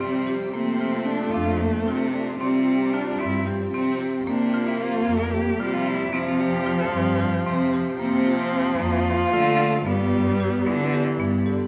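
In a straight 7/8 pulsing at 225 BPM in eighths, this restless, playful contemporary chamber piece in C mixolydian sets a bright, focused cello melody with vibrato up front over a dark viola second line with soft-attack portamento, a second bowed cello holding the bass, woody rosewood marimba arpeggios struck with medium hard mallets, and a cloudy, evolving granular pad with its own reverb in the background, the harmony alternating between Csus4 and Bb before turning to G at 9.9 s, heard in a moderate recital hall with a warm production.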